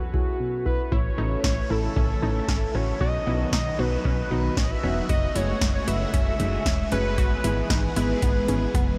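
Synth-pop at 115 BPM with a cool, driving mood, this excerpt opens on a fat, detuned analog lead carrying the melody through tape echo over soft, round electric-piano-like keys with chorus and an electro drum machine with deep kick, punchy snare and metallic hats, sitting up front. At 0.9 seconds a solid, dark FM bass, a swirling phased string machine and a lush, warbling unison pluck playing arpeggios join, the strings and pluck tucked in the background, moving through A, B, F#madd9 and E/G#. A drum fill lands at 8.7 seconds, and the whole dreamy mix is soaked in a huge ambient reverb.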